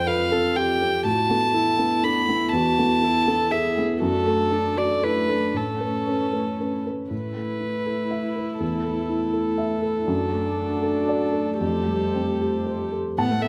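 Set in a moderate recital-hall reverb, this hopeful, tender neoclassical fragment for piano and strings moves in 3/4 with uneven, rubato beats: a rich, floating violin carries the melody sul tasto up front, a felt-muted upright piano adds mellow, intimate accompaniment, a viola with light vibrato and an airy bow plays close beneath, and a shimmering, retro chorused pulse-width pad holds sustained chords in the background.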